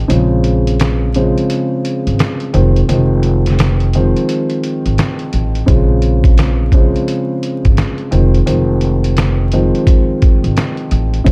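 Dark, crackling vinyl grain and a small-room closeness frame this moody, tough boom-bap hip-hop fragment, swung on the sixteenths and cut from a longer piece. A woody, gut-string upright bass plucks low and up front, while a boxy, mellow grand piano, softened by cassette tape and filtering, sustains long Bbm7 and Fm7 chords. A muffled, compressed, pitched-down sampler-style kit with a thumpy kick and medium-tuned snare sits in a break through 5.7 seconds, its kick dropping out from 2.9 seconds until that point.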